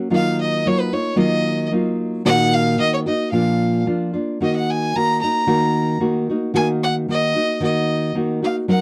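Passionate and dramatic, this Mexican folk excerpt in Eb minor moves at 112 BPM in a straight 2/4, with a fingerpicked, full-bodied nylon-string guitar laying down deep classical accompaniment from the start while a single bowed violin carries a biting, intense melody with light vibrato and a smooth top, both up front in a dry, close 1970s-style booth sound as the harmony moves from Ebmadd9 through Ebm/Bb and Bb back to Ebm.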